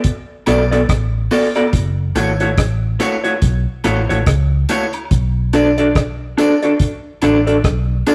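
Roots reggae at a meditative, hypnotic 71 BPM with swung 16ths, this rough rehearsal-room excerpt opens on a cloth-damped, thuddy drum kit of hi-hat, tight kick and rim click; at 0.5 seconds a slightly broken-up, lo-fi electric guitar through a small old amp with slapback echo, a round, foam-muted fingered electric bass, and a faint, saturated tambourine and woodblock with their own slapback echo join over Bm7 and F#m7, inside a moderate stone-room reverb.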